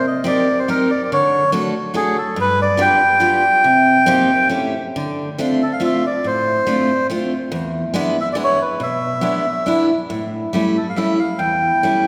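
A reedy, breathy melodica carries the melody up front over a bright, full-bodied picked steel-string acoustic guitar in this nostalgic, whirling musette waltz at 140 BPM in 3/4 with a rubato feel, settling into D minor from 5.0 s and bathed in a long church reverb, cut from a longer piece.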